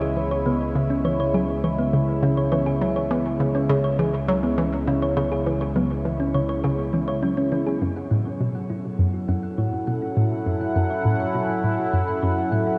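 A straight 4/4 pulse drives this cosmic, expansive fragment of sequencer-driven space music, where a hollow, bouncy square-wave pluck riff sits up front alongside a resonant, evolving sweeping pad of sustained chords, a round, tine-like thumb-piano-like pluck spins warbling arpeggios through tape echo and shimmer reverb and fades in from 7.8 s as the harmony moves, a warm analog drone anchors the bass until 7.8 s, and a faint, breathy wind-like tuned noise texture drifts in at 9.4 s, all set in a vast cathedral space with a cassette-tape character.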